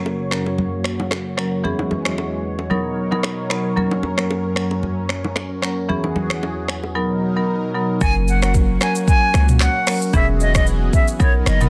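A woody marimba with rosewood bars and a smooth, sawtooth pad thickened by chorus open this sunny, joyful afrobeats cut at 113 BPM in F# mixolydian, joined at once by close acoustic bongos and congas that play until 6.9 seconds and an up-front electronic drum kit with a deep kick, metallic hats, snaps, handclaps, shaker, toms and a softly clipped snare. The lilting 16th-note swing carries a chord cycle of F#, E6 and Bmaj7. At 8.0 seconds an airy, straight-toned concert flute takes the melody through digital delay while a punchy, sine-based 808 bass arrives heavy and up front, all in light reverb under a dense, heavily limited modern master.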